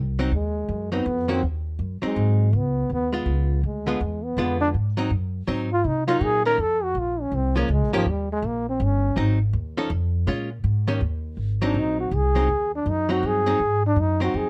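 Playful and swinging, this short cut from a longer small-group jazz piece moves in a lilting three-beat swing that blends swing and bop. An up-front trombone carries the melody as a solo, its warm tone shaded with light vibrato and scooped notes; it rests briefly after 9.2 seconds and returns at 11.6 seconds. Underneath, a pizzicato upright bass with steel strings gives a woody, acoustic foundation. A picked, hollow-body archtop guitar, miked and amplified, adds accompaniment with a dark, clean, compressed electric sound. The recording is close and detailed with very little reverb, placing all three players near the listener.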